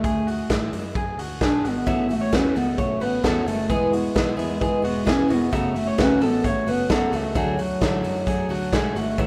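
Jangly indie pop with a nostalgic, youthful mood, moving at a straight, steady pace in four. A hollow, woody synth lead carries the melody with a soft attack, sustained notes, vibrato and a chorus shimmer, sitting highest in the mix. Alongside it, an electric guitar through a small old amp plays bright, twangy, slightly broken-up arpeggios, while a foam-muted electric bass stays round and punchy in the background. A raw garage drum kit sits up front with a punchy kick, medium-tuned snare and hi-hat, its sound saturated and gritty with a rolled-off top. A full-bodied fingerpicked jumbo acoustic guitar joins at 1.9 seconds as the chords move from D through A6, E and F#m back to D. The whole cut has the rough feel of a home demo, touched with light small-room reverb.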